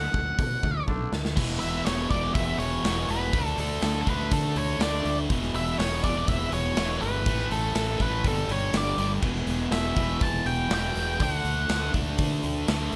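A straight 4/4 pulse from a punchy, up-front rock drum kit in an airy stone room drives this dark, brooding quiet-loud alternative rock fragment, where a twangy, chorus-lushed clean guitar plays arpeggios alongside a growly overdriven fuzz bass and a picked octave-fuzz lead melody with slapback echo, until a drum fill at 0.9 seconds gives way at 1.4 seconds to a heavy riff from a bright high-gain guitar and a thick fuzz guitar sitting in the background, with the lead dropping out at 11.9 seconds.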